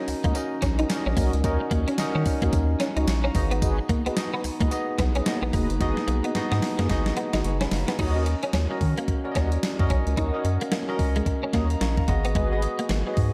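R&B in a new jack swing style, this bouncy, confident excerpt from a longer piece swings its sixteenths over a crisp 8-bit drum machine with a thumpy kick, fat snare, hi-hat, tambourine and crash, sitting up front beside a round, deep analog bass built from square and sine tones. A bell-like tine electric piano with lush chorus and slapback echo carries the chords, a clean, picked and compressed electric guitar plays a riff through ensemble chorus, and mellow, detuned sawtooth synth brass stabs sit in the background with tape echo and a filter sweep. The drums play a fill from 5.8 to 8.0 seconds, the electric piano adds its own fill at 11.3 seconds, and a concert hall reverb gives the mix a big arena sound.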